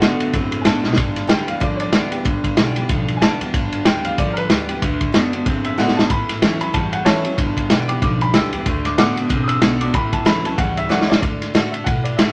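Rockabilly with an upbeat, retro swing feel, cut from a longer piece and led by a clear, polished upright piano that solos from the start until 11.2 seconds. A twangy, slightly broken-up electric guitar riff through a small old amp with spring reverb runs alongside it up to that point, while a bright dreadnought acoustic guitar and a thumpy, gut-strung upright bass sit in the background. An up-front vintage drum kit with a punchy kick, a muffled lo-fi tone and a rolled-off top adds short fills, including one at 5.8 seconds, and the whole band plays in a small, moderately reverberant room.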